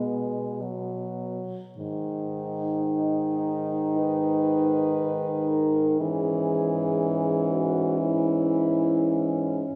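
Heard from further back in a concert hall, this short cut from a longer classical piece sits in a wet reverb with a 2.1-second tail, giving the horn quartet a soft, distant glow. The mood is serene and lyrical, unfolding in free time in G# minor, tuned to A4 = 438 Hz. Four French horns sound together throughout. The top horn carries the melody between D#4 and B4 with a mellow, punchy tone and a smooth upper edge, while a second horn in the background adds a vibrato-touched inner line from B3 to D#4. Beneath them, a clear horn sits up front with the accompaniment from D#3 to G#3, and the bass horn, present and lightly shaded with vibrato, anchors the harmony between G#2 and B2. After opening on B5, the harmony settles onto G# minor at 1.8 seconds and moves to C# minor over G# at 6.0 seconds.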